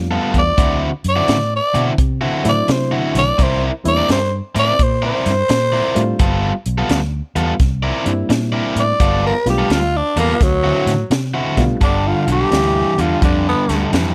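A swung 4/4 shuffle at 86 BPM sets up this laid-back, swaggering electric blues excerpt, with a compact acoustic drum kit giving a dry, high-tuned snare, punchy kick and hi-hat beneath a dark, round, foam-muted electric bass and a reedy, clean electric piano comping on ninth chords centred on G. Up front, an overdriven, bright picked guitar riff sits beside a growling tenor saxophone that solos in a jazz style with breathy, raspy tone and scooped notes. At 11.8 seconds the piano drops out as the harmony settles on a bare G7 and the band pushes on under light reverb.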